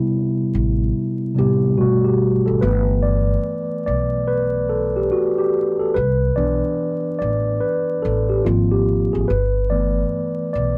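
Nostalgic, cosy hip hop with a lazy swung groove, cut from a longer piece and dusted with vinyl crackle and a moderate studio reverb. A mellow tine electric piano, filtered and softened by cassette tape, opens on Cmaj7 and Gmaj9 before stepping into a solo at 2.6 s over G6, Cmaj7 and a brief Ab6. Beneath it from 0.5 s, an up-front pizzicato upright bass adds a woody, warm low end.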